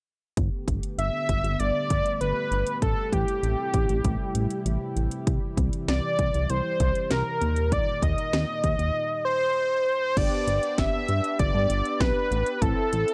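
A thick, detuned unison lead with vibrato carries the melody up front from 1.0 seconds in this wistful, bright synth-pop excerpt, over a punchy house drum kit with cracking snare and metallic hats and a glossy, dark chorused synth bass. A shimmering, evolving pulse-width pad holds sustained chords through a shift from Gadd9 to a surprising Eb, before a silent gap at 8.9 seconds. When the music returns at 10.2 seconds, mellow, round synth brass with chorus takes over the accompaniment, all set in a gritty digital ambience.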